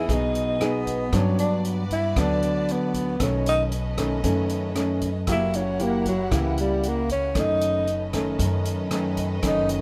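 Bossa nova at 116 BPM in 4/4, breezy and sophisticated, this short cut from a longer piece features a dark, breathy tenor saxophone soloing up front, close-miked and intimate with subtone, scooped notes and vibrato in a plate-reverb sheen, over up-front, thumb-plucked classical nylon-string guitar, a woody, thumpy pizzicato upright bass, a lush bowed violin section holding soft-attack sustained chords further back, and a distant, roomy big-band drum kit entering at 0.1 s with hi-hat, rim click and boomy kick, all moving through Emaj7, Gmaj7, B9 and F#7b9 harmony under light reverb.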